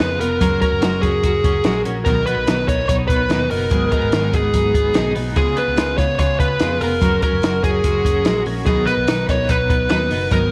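Jangly indie pop at 145 BPM with a bright, youthful mood, this excerpt sets an up-front, fuzz-distorted lead guitar with slapback echo over a full-bodied dreadnought acoustic, a clean, compressed twelve-string electric in the background with tremolo and slapback echo, a round, foam-muted vintage bass and a small cocktail kit with a high-tuned snare and punchy kick, inside a moderate echo-chamber reverb as the chords move through Gbadd9, Cbmaj7, Abm7 and Db7.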